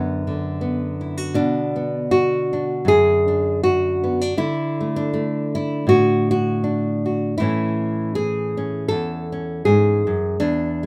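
Melancholic and wistful, this brief folk cut from a longer piece features a solo fingerpicked nylon-string guitar in B dorian at 80 BPM in 4/4, with a gentle swing on the eighth notes. The classical-toned guitar sits up front in light reverb, ranging from E2 to A4 as the harmony moves from Bm to D at 4.4 seconds and on to A at 7.4 seconds.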